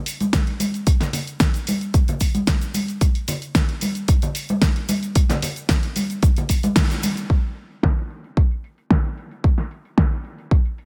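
A punchy, layered electronic kick drives this sleek, cosmic nu-disco excerpt at 112 BPM in a straight 4/4. A fat-snared pop drum kit with low-pass filtering on its snare, hats and room sits up front beside it, while bright cabasa and congas played with soft hands add acoustic sparkle until 7.3 s. A band accent lands at 6.8 s just before the percussion drops away, leaving kick and kit to carry the second section in a dry, close sound.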